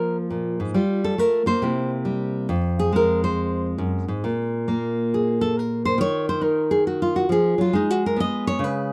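Solo jazz with a moody, smoky air, swinging at 138 BPM as a fingerpicked nylon-string guitar plays alone for the full 8.9 seconds of this fragment cut from a longer piece, its fresh strings bright and full-bodied with a deep classical tone and audible finger squeak, placed up front in a dry, close 1970s-style studio sound with light reverb, moving from a rootless Db6 through Gm11, C7 and Fm to a chordless passage at 4.2 seconds before settling on Ebm and Abm.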